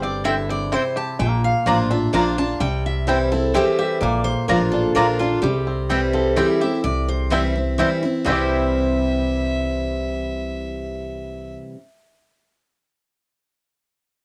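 A home cassette recording in a wet booth carries this lively, joyful bluegrass fragment at 127 BPM in 3/4 and C mixolydian, moving between C and Bb chords, as a twangy fingerpicked banjo and a bright, tape-tinged picked steel-string guitar share the melody, a second dreadnought guitar sits up front with finger squeak in the accompaniment, a thumpy gut-string upright bass anchors the low end, a woody mandolin adds stabs from 0.2 seconds, and a nasal, biting fiddle joins with a second line at 8.3 seconds.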